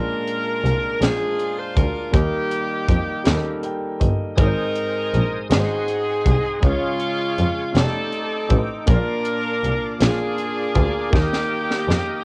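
An edgy saxophone section opens this soulful, jubilant slow gospel excerpt in 6/8, carrying the melody up front with jazz-style vibrato over an intimate concert grand piano whose action noise and deep bass come through a cassette tape coloring. Crisp fusion drums join almost at once with a high-tuned snare, tight kick and hi-hat, followed by a single bowed double bass, focused and smooth on top with its own vibrato. The piano plays a short fill at 3.3 seconds, and at 4.4 seconds a reedy tonewheel organ slips in behind with sustained chords, lightly overdriven, with key click, chorus vibrato and a fast rotary speaker. The harmony moves through seventh chords and a rootless F13, and the drums close the passage with a fill at 11.1 seconds. It is a dry home recording on cassette with little reverb.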